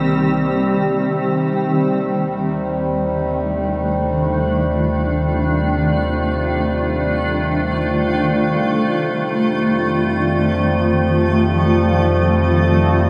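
A round, deep analog synth bass fades in across the full 13.1 seconds of this melancholic, serene ambient fragment in free time, tuned to A4 = 439 Hz. Above it, a bright, cloudy granular pad with its own built-in reverb sits up front, holding sustained chords that move from Cm7 to Ebmaj9#11 at 1.4 seconds and F7 at 8.9 seconds, while a reedy, breathing pedal harmonium drone fills the middle, all set in a vast cathedral reverb with a 5.6-second decay.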